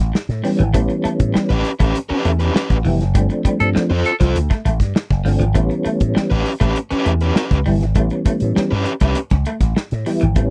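Funk at 100 BPM in A mixolydian, playful and gritty, this short cut from a longer piece rides a bright, punchy slap bass with an envelope filter and a soul drum kit with a tight kick and rolled-off top, while a clean electric guitar with lush chorus plays a riff and a mellow tonewheel organ with chorus vibrato and slow rotary speaker adds round, dark stabs. A crunchy overdriven guitar with tremolo joins as accompaniment from 1.5 to 9.2 seconds, and a raspy tenor saxophone cuts in briefly on A4 at 3.6 seconds during a band accent over the move from A9 to G9sus4 and back. The sound is dry and close, like a 1970s studio recording.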